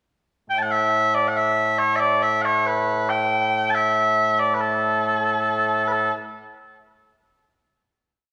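A wet recital-hall reverb surrounds a lone set of small bagpipes, which sit up front with a touch of tape echo, their tone mellow and sweet with a continuous, vibrato-tinged sound. This is a whole, brief piece of Scottish traditional pipe music in 6/8 at 92 BPM, ceremonial and proud in mood, with an ornamented modal melody in A mixolydian, tuned to A4 = 435 Hz. The pipes play solo from 0.5 to 6.1 seconds, moving from a short pickup into a single strain and settling on a final note that rings into the hall.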